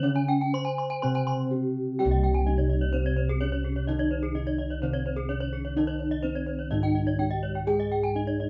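Up-front bossed gongs carry the bass with a round, beating, airy bronze tone, anchoring this brilliant, shimmering gamelan excerpt in a straight 4/4. Above them, a mellow, soft bronze metallophone struck with padded disc mallets sings the melody in a boxy small room, while a second metallophone played with a wooden mallet rings out the accompaniment. Two bright metallophones struck with horn mallets spin arpeggios throughout, their paired tuning producing shimmering beats, one of them notably airy.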